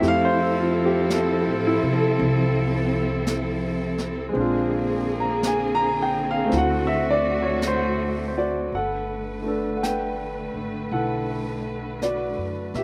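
Dry and close with an open-air feel, this tender, romantic jazz ballad excerpt at a slow, swung 55 BPM places an intimate grand piano, its action noise audible, up front beside a smooth, bowed cello section with vibrato, while a woody, thumpy pizzicato upright bass and a brushed kit with a high-tuned snare sit further back, and the harmony moves from Fmaj7 to settle into G major on a Gmaj9 at 8.7 seconds.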